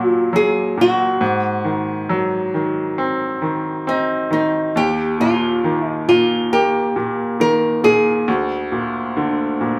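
Emotional and tender, this pop fragment sets a small, fingerpicked nylon-string guitar melody up front over a bright, polished grand piano accompaniment with brilliant, short-sustained chords moving from Ebm through Ab7 to Eb and Bb7/D, the two players heard together live in one room with a wet studio reverb.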